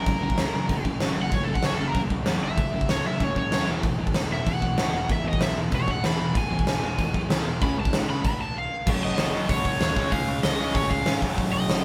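A straight 4/4 punk rock beat comes from a big rock drum kit up front, its fat snare, punchy kick, crash and hi-hat ringing in a bright stone room, in this rowdy, energetic excerpt from a longer piece. Over a low riff from a sludgy overdriven guitar, a very quiet tight distorted guitar and a growling picked bass sitting in the background, a cranked stack guitar carries a bright, picked overdriven solo. The band hits a stop at 8.2 seconds and then launches into a new section at 8.9 seconds, all caught live in one room with moderate reverb.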